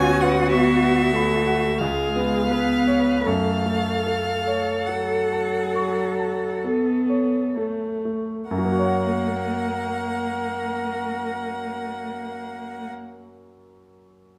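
Solemn and melancholic, this excerpt from a slow romantic movement for piano quartet in 3/4 moves with rubato and slows over its first 8.5 seconds: a rich, smooth violin carries the melody with light vibrato over a dark, woody viola and a clear, polished concert grand with deep bass up front, while a distant cello adds an expressive second line with portamento, and the strings stop at 12.9 seconds so the piano sounds alone until 14.4 seconds in a moderate stone room.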